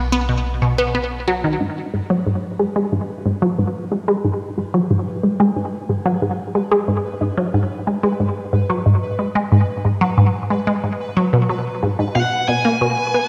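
A squelchy, phased blip pluck drives this cosmic, mysterious piece of ambient sequencer space music in G# minor at 91 BPM, opening over a round sub bass that drops out at 1.6 seconds as the harmony settles on G#m, after which a chorused, pulsing gated texture fades in from the background at 2.4 seconds, before a smooth overdriven lead guitar arrives at 12.2 seconds on a B5 chord, all set in a lush scoring-stage reverb in this excerpt from a longer work.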